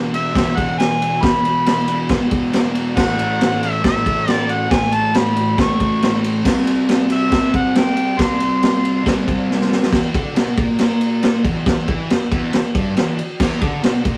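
A rough rehearsal-room sound with a wet, small-room reverb gives this cut from a longer garage rock track a rowdy, swaggering feel, driving along in a straight 4/4 at 138 BPM with the tuning set slightly flat at A4 = 436 Hz. A double-tracked fuzz guitar sits up front, grinding out a distorted, picked riff over power chords moving from E5 to A5 to C5. A mellow harmonica carries the tune in its upper register, with light vibrato, scooped notes and a punchy, overdriven bite, until it drops out at 9.1 seconds. Underneath, an acoustic vintage drum kit pushes the groove with a punchy kick, a medium-tuned snare, and dark, rolled-off crash and ride cymbals. A drum fill at 9.5 seconds leads into a new section at 9.9 seconds, where the guitar and drums carry on together, landing back on E5.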